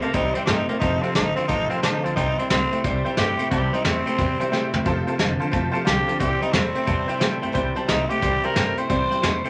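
Rockabilly with a rollicking, retro swing: a raspy, gritty tenor saxophone carries the melody up front with vibrato, while a twangy clean electric guitar drives a riff through a phaser and a woody, thumpy upright bass plucks beneath it. A jangly, metallic tack piano and a boxy archtop acoustic guitar, heard in the background with finger squeak, fill out the accompaniment, and a soft brush drum kit with a tight kick sits up front, marking a fill at 4.5 seconds. Moving between C and F, this short excerpt from a longer piece has a club-like reverb and a veil of vinyl crackle.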